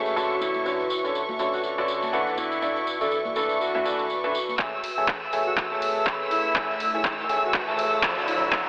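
Joyful and feel-good, this piano house excerpt, cut from a longer piece, swings lightly in 4/4 and is soaked in lush hall reverb with a dreamy, telephone-like color over the whole mix. An up-front, worn baby grand piano plays the riff throughout, pumping with the sidechain and carrying tape echo, while a rich chamber string section holds bowed chords with light vibrato above it. A warbling, nostalgic pad sits in the background with chorus and phaser, and a hollow, organ-like FM bass lurks low and dark in the first half as bright, saturated tambourine and congas add acoustic sparkle. Over the Dmaj7 and E7sus4 harmony, a classical-style alto saxophone sings a solo melody with vibrato through filtering and tape echo. At 4.6 seconds a build-up begins: a dry, overdriven kick and a punchy analog drum machine with handclaps and hi-hat enter with a drum fill, filter sweeps move across the piano and saxophone, and a background riser joins at 6.3 seconds.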